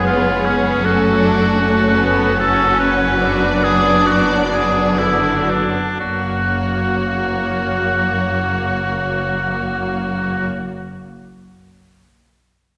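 Classical, a melancholic and elegiac slow romantic movement for symphony orchestra in 3/4, cut from a longer piece, moving with a rubato feel that slows through the first 6.0 seconds before the harmony settles on F# at 6.0 seconds. A smooth, lightly vibrato-tinged violin section carries the melody while a bright, up-front solo oboe with a soft attack sings a second line, joined by a lush, distant second violin section. Intense, clear violas supply the accompaniment over a focused cello section and an even double bass section, all set in a church or concert hall with a wet reverb and a faint mains hum.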